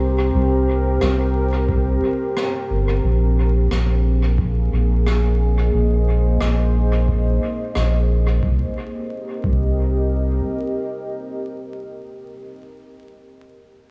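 Deep and spacious, this ambient dub excerpt moves at 89 BPM in 4/4 with a gentle 16th-note swing, set in C minor. A dark, warbling pad of detuned sawtooth voices with a sine sub octave holds sustained chords up front from the start, its slow attack and long release softened by chorus and its own reverb, moving from C5 to Bb9sus4 at 3.0 seconds and settling on Cm7 at 8.4 seconds. Beneath it, a round, soft sub bass with a fast attack and tube saturation sits prominently until 10.4 seconds. A distant, roomy rim click played with brushes enters at 1.0 seconds, trailed by dub echo, while a very quiet analog kick with a deep thump joins shortly after. The mix is echo-heavy, with vinyl crackle and small-room ambience adding texture.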